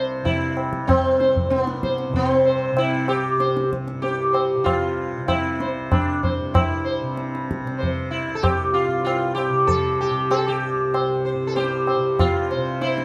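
Set in 3/4 at 96 BPM with a straight feel, this serene, radiant Hindustani classical passage, cut from a longer piece, opens with a softly plucked tanpura drone in the low register from C2 to C3, its tone warm and buzzing, joined by low-tuned tabla with a short ring from 0.3 seconds. Up front from the very start, a plectrum-plucked sitar carries the melody between B3 and C5, its mellow tone shimmering with sympathetic strings. A moderate small-room ambience surrounds the trio.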